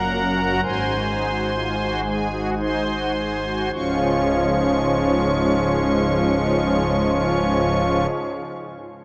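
A serene, reverent classical chorale for solo pipe organ in Db major, moving in a rubato 3/4 at roughly 50-73 BPM and slowing over the opening 3.7 seconds as the harmony passes from Gb through Ab7 to settle on Db. The organ's soft, shimmering string and celeste stops sit up front in a romantic voicing that spans from deep bass tones to high treble. A long church reverb surrounds it, while the worn, warbling cassette tape adds a gently drifting pitch to this brief fragment of a longer work.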